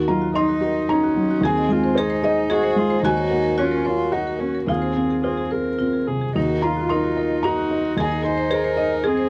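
A felt-muted upright piano opens this melancholic, longing neoclassical piece, its mellow, intimate tone carrying audible action noise, alongside a soft sul tasto viola and a bright marimba struck with hard mallets, whose woody arpeggios are touched by tape echo. At 0.4 seconds a single bowed cello enters with a second line, played sul tasto with light vibrato, as the harmony moves from Ebm through Ab/Eb, Gb/Eb and Fm/Eb over an Eb bass, in Eb dorian. The piece moves in a rubato 3/4 at about 111 BPM, and the dry, close 1970s-style studio sound keeps the piano up front in this short cut from a longer piece.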